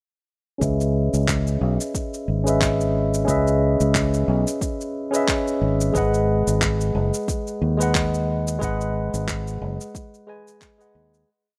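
A rough home-demo mix with light reverb frames this relaxed, wistful sunset chillout piece with a swung sixteenth-note groove, where a clean tine electric piano played through a combo amp holds spread-voiced chords with syncopated pushes under a low-pass filter sweep and delay, a dark, round, punchy fingered electric bass carries a dub-style line up front, and a deep, soft, overdriven electronic kick joins gritty, compressed electronic shaker and handclaps in a light lounge beat before the whole piece fades out from 7.7 to 11.3 seconds.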